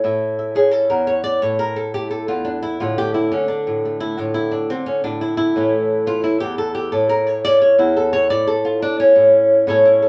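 Recorded with a moderate studio reverb and the immediacy of live playing in one room, this fiery, intense flamenco excerpt at 175 BPM in A phrygian dominant features a solo nylon-string flamenco guitar, dark, fingerpicked and up front with audible finger squeak, moving from A to D5/A and back to A before shifting to an unharmonized, unaccompanied passage at 8.3 seconds that runs to the end of the excerpt.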